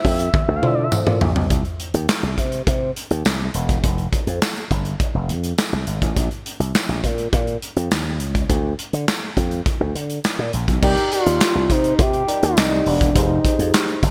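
A funky, late-night early-eighties boogie funk excerpt at 103 BPM opens with a smooth sawtooth portamento lead with vibrato, a soft, dark FM electric piano tucked in the background, a growly, punchy slap bass through an envelope filter, and an up-front studio drum kit with handclaps and gated reverb rolling through a fill; a very quiet, jingly tambourine joins at 0.9 seconds, and the lead and piano fall away before returning together at 10.8 seconds over Cm9 and Fm9 chords in a bright 1980s-style digital production.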